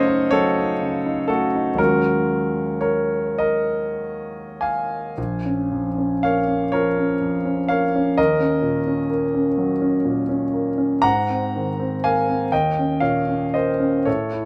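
A concert grand piano opens at once, heard solo for the full 14.5 seconds of this fragment from a longer impressionist classical piece. The mood is luminous and dreamy, with a very slow, rubato pulse of 32-44 BPM counted in dotted quarters in 6/8. The instrument sounds intimate and polished, placed up front with deep bass and audible action noise that brings the listener close to the keys, spanning Bb1 to Bb5. The harmony drifts through rich minor colours, from Gbm6 to Ebm11, Bbm7 and Ebm7, before an Ab13 at 11.0 seconds gives way to a bare Eb5. A moderate studio reverb adds a soft halo around the notes.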